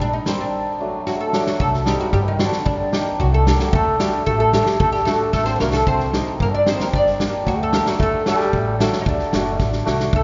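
A straight two-beat pulse drives this bittersweet, soulful klezmer excerpt: an up-front big-band drum kit with a punchy kick and medium-tuned snare drops in fills, while a dark pizzicato upright bass holds the low end. A woody, fretless oud carries the melody with deep, double-stringed plectrum plucking at the front, over the shimmering, ringing accompaniment of a mellow hammered dulcimer. From 1.1 s a brilliant, distant trombone adds a second line in the background, and a moderate cathedral reverb fills the church-like space, with the upper treble rolled off.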